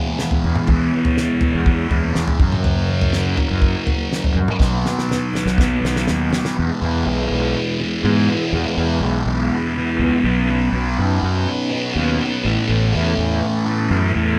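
Hazy and kaleidoscopic, this psychedelic rock excerpt at 122 BPM in 4/4 rides a thick, double-tracked fuzz guitar riff colored by phaser over a round, punchy overdriven fingered bass. A dry 70s drum kit with a fat snare and tight kick, joined by very quiet high-tuned congas, drives the opening until a drum fill from 4.6 s carries the kit to its stop at 6.6 s. Guitar and bass press on from there, while a vintage sawtooth string machine's chorused viola chords hover throughout in the background of a moderately reverberant stone room.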